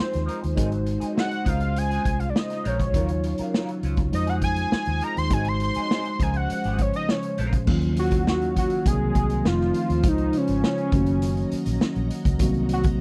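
A fat, detuned sawtooth synth lead with a sub octave and vibrato opens this lush 1970s-style soul excerpt, taking a solo over the first 7.7 seconds at 102 BPM in Eb dorian, up front and thickened by chorus. Beneath it a mellow tine electric piano plays through its built-in speakers, while a round, foam-muted fingered bass and a punchy vintage drum kit with dark cymbals and a rolled-off top keep a straight 4/4 feel in a small, pumping room. A very quiet string machine adds silky, warbling sustained chords with a slow attack and ensemble chorus. A bright, twangy electric guitar through a small old amp plays a slightly broken-up riff with wah until about 7.6 seconds. The harmony moves through Fm7, Ab7, Dbmaj7 and Ebm9 before a second section brings Cm7b5, F7 and Gb6, giving the smooth, cinematic groove a gently shifting colour.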